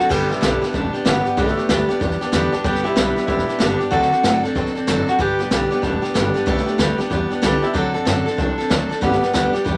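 A twangy, slightly broken-up electric guitar carries the melody over a bright, full-bodied acoustic guitar that sits up front, opening this upbeat, rollicking rockabilly excerpt in G major at 188 BPM with a swung feel. A woody, dark pizzicato upright bass and a brushed drum kit with dark cymbals, a medium-tuned snare and a boomy kick join almost at once, all in a moderate studio ambience. The chords move simply between G and D7, and the short cut ends at about 9.8 seconds.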